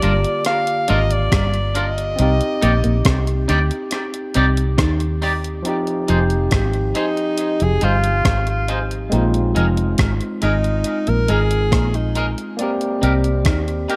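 A straight 4/4 pulse at 69 BPM from a thumpy, sampler-style 12-bit drum machine (hi-hat, kick and rim click with gated reverb and tape echo) and a dark, round, foam-muted fingered bass up front anchors this longing, bittersweet lovers rock reggae in F dorian, where a gritty, overdriven tine electric piano with tape echo accompanies, a slightly broken-up guitar through a small old amp plays a riff in the background, a twangy, scooped guitar adds stabs through spring reverb and echo, and a clear alto saxophone with light vibrato carries the melody before stepping into a solo at 5.7 s over the move from Gm7 and Cmadd9 to Fm7, Bb7sus4 and Cm7, all in a lightly reverberant room in this excerpt cut from a longer piece.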